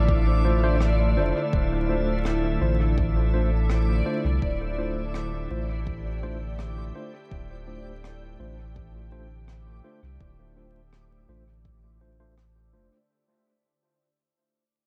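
A round, up-front sub bass anchors this hazy, spacious ambient dub passage on a Dm7 chord, beneath a calm organ-like pad with ensemble chorus and reverb, a dreamy reversed swelling texture, a deep layered electronic kick, bright tine electric piano stabs run through dub echo and a filter sweep, and a smooth rim click echoing in the background, with dark vinyl crackle in the production as the music fades out across 13.1 seconds.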